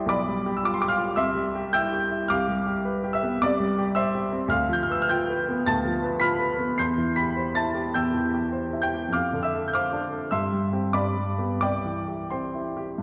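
A romantic classical character piece for solo piano in C major, this lyrical, warm fragment moves in 4/4 with a flexible rubato that drifts between 86 and 111 BPM. The clear grand piano, covering a broad span from deep bass to high treble, has a worn yet present tone that sits up front. Its harmony circles around the home chord before settling on a cadence to C at 11.6 seconds, all bathed in the long, wet reverb of a concert hall heard from further back in the room.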